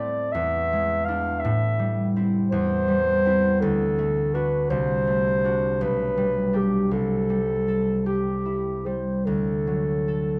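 In a 6/8 with rubato at about 49-56 dotted-quarter beats per minute, this tender, serene romantic classical duo pairs a dark, soft-attacked clarinet singing the melody with a fingerpicked concert harp whose ringing tones supply the accompaniment, both heard throughout the 10.4-second fragment in a moderate stone-room reverb, as the harmony moves from E7 through Am7, C/E, D and G/B before settling on D.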